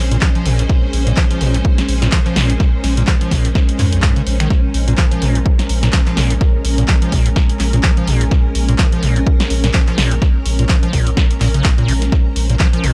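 Hypnotic and raw, this acid house excerpt moves at 126 BPM in Bb minor with a swung 16th feel, resting on a single Bbm7 chord as a punchy, up-front analog kick and a drum machine of snaps, handclaps, hi-hat and snare drive beneath a deep, round sine sub bass. A squelchy, hollow square-wave acid bass riff with a resonant filter pluck cuts through with overdrive, chorus, 12-bit sampler grit and analog delay, while a lush vintage string machine holds sustained chords through phaser and ensemble chorus, its level pumping with the sub bass against the kick. In the background, a cloudy, evolving granular pad drifts with its own reverb, all captured in a dry, gritty hardware recording.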